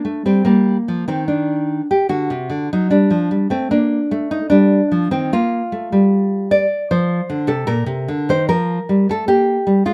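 A full-bodied, fingerpicked nylon-string guitar plays alone and up front in light reverb through this flowing, grave passage from a longer baroque-style classical dance, moving in a rubato 3/4 at 75 BPM from G minor to B-flat major at 5.3 seconds over chords such as Ebmaj7, D7 and Gm7.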